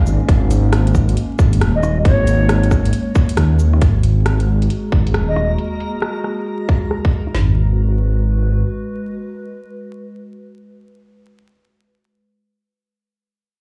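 Swung 16ths at 136 BPM in 4/4 drive this wistful, nocturnal future garage piece in G# minor, where a tight-kicked, woody-snared electronic kit with toms sits up front beside a second layer of metallic hats, cabasa and rim clicks, a deep, rumbling detuned saw bass and a warbling, lo-fi chorused pad both pump with the sidechain, a pure wooden baroque flute with vibrato and tape echo sings from 1.8 s, the kick drops out at 3.4 s, and from 3.8 s a reversed, granular swelling texture drifts in as the drums take a filter sweep, all coloured by vinyl crackle.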